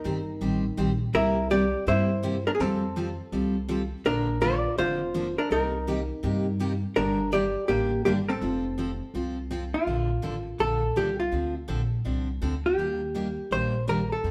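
A dark, clean hollow-body jazz guitar carries the melody up front, its compressed electric tone sitting over a bright, full-bodied picked steel-string acoustic guitar and a woody, thumpy upright bass played pizzicato, all three heard together throughout this short cut from a longer piece. It's a cheerful, down-home western swing number in a swung 4/4, moving through jazzy changes like Bbmaj7, Cm7 and Dm7 before a new section arrives at 9.9 seconds. The trio sounds like a band playing live in one room, wrapped in a moderate stone-room reverb.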